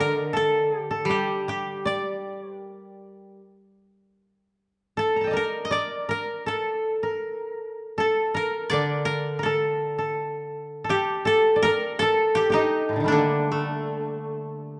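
Uneven, rubato beats drift around 80 BPM in 4/4 as this austere, calm passage of Japanese traditional chamber music, taken from a longer piece, unfolds in D miyako bushi. Three fingerpicked kotos sit up front, each with a dry, woody attack: a warm lead koto carries the melody, a mellow second koto spans the lowest and highest registers, and a bright accompanying koto plays from the start, drops out at 3.4 seconds and returns at 8.7 seconds. A moderate stage reverb and a dark production frame the sound.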